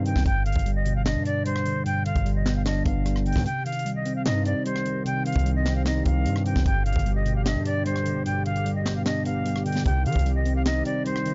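A melancholic, dark trap excerpt in C harmonic minor opens with an airy silver flute melody carrying vibrato through a low-pass filter and analog delay, over a mellow, clean tine electric piano and a punchy, heavy 808-style bass, all moving in a half-time feel at 150 BPM through G and C minor chords. A tight funk kit with a high-tuned snare, hi-hat, rim click and handclaps sits up front, while a smooth, detuned sawtooth pad with chorus slips in behind at 3.5 seconds, just as a brief break arrives. The kick drops out from 8.3 to 9.9 seconds, and the whole excerpt has a dry, gritty small-room sound.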